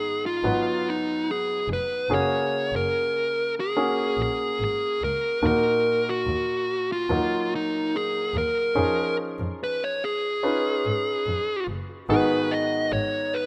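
A dark, smooth overdriven electric guitar carries the melody up front, its picked lines sitting over a clear, polished baby grand piano that plays the accompaniment throughout this hopeful, tender pop ballad in F# major at 72 BPM. A bowed double bass, dark and intimate with light vibrato and a soft attack, enters at 0.4 seconds and holds the low end until 13.0 seconds as the chords move from G#m7 through F#add9, D#m and C#add9/E# back to G#m7. A lush hall reverb surrounds the parts in a rough home-demo mix, and the passage is cut from a longer piece.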